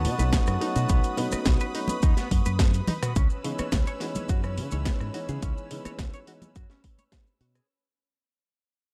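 Sensual and cosmic, this nu-disco fragment, cut from a longer piece, moves at 106 BPM in a straight 4/4 in C# minor, with the harmony shifting from B7 to C#m7. A punchy, tape-warm electronic kick sits up front, joined by a layered house kit with a cracking snare, hi-hat, rim click and toms, and by congas, maracas and bongos played with hard hands in the background. A fingered electric bass, bright and amped through an envelope filter with tube saturation, pumps against the kick, as does a lush, detuned sawtooth unison pad with chorus and a slow attack. A boxy, mellow grand piano comps underneath, while a clean semi-hollow guitar riff, softened by subtle chorus and a low-pass filter, weaves through the groove. A veiled, cup-muted trumpet section carries the melody with tape echo until 2.6 seconds, a drum fill lands at 2.9 seconds, and from 3.2 seconds the guitar takes a filter sweep as the music fades out. 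The whole recording has a dry, gritty hardware character set in digital ambience.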